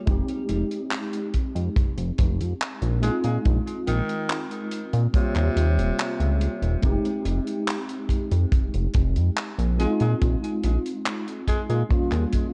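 A straight, unhurried 4/4 pulse is carried by a tight, up-front kick drum and a crisp, airy fusion kit of handclaps and hi-hat, giving this melancholic, nostalgic vaporwave excerpt a polished studio-room feel. Underneath, a glossy, retro synth bass blends pulse, sawtooth and triangle tones with ring modulation, a plucky filter and tube saturation, sitting prominently in the mix. A mellow tine electric piano, clean and direct, supplies the chords through ensemble chorus and tape echo, cycling through Fm7, Bb7sus4 and Eb7. At 3.0 seconds a raspy, gritty tenor saxophone takes the lead in a low register, punchy yet smooth on top, with light vibrato, scooped notes and its own tape echo. The whole mix is echo-heavy with light reverb and small-room ambience, and a cassette-tape character adds to its faded, dreamy haze.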